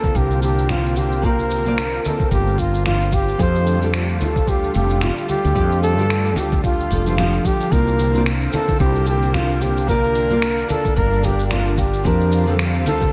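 A breathy, intimate flugelhorn leads this blissful sunset chillout excerpt, its mellow jazz-style melody carrying vibrato, scooped notes and a whispered soft attack, trailed by tape echo and shimmer reverb. Beneath it, a woody fretless electric bass sits up front with a round, growly tone, while a lush, detuned unison pad holds sustained chords with chorus and shimmer reverb, its slow attack and long release giving it a thick glow. The groove moves at 111 BPM in 4/4 with a swung sixteenth-note feel, built from a gritty, thumpy sampler-style electronic kick drum and compressed electronic shaker and finger snaps, re-recorded in a large room for a tape-warm character. Ringing congas played with hard hands sit in the background, as does a dark, fingerpicked nylon-string guitar with audible finger squeak, entering at 1.2 seconds and dropping out at 12.6 seconds, also wrapped in tape echo and shimmer reverb. 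In F major, the harmony drifts between C9sus4 and F69 inside an echo-heavy mix with a moderate chamber reverb, leaving a dreamy, spacious haze.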